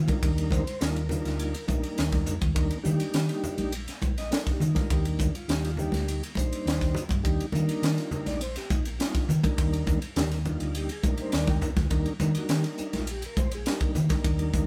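Electric jazz fusion at 103 BPM in Eb major, this slick, soaring excerpt cut from a longer piece rests on a single Ebmaj7 chord as a flute-like tonewheel organ through a slow rotary speaker holds down the accompaniment, a dark, round hollow-body short-scale bass anchors the low end, a gritty, up-front drum kit with a high-tuned snare and punchy kick pumps in its small room, and ringing congas played with hard hands add color, all captured as a band playing live in one room with moderate studio reverb.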